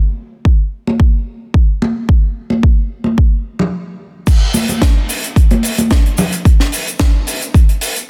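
A dense, heavily limited modern master with a small-room ambience frames this sunny, groovy nu-disco passage cut from a longer piece, built on a punchy, layered electronic kick drum up front and bright, high-tuned congas with a vintage, band-limited tone and hard-handed attack. After a brief stop at 3.7 seconds, the drop arrives at 4.3 seconds as a tight funk drum kit enters with a high-tuned snare, dark cymbals, hi-hat and shaker. The congas fall away at 6.3 seconds while the kit carries on.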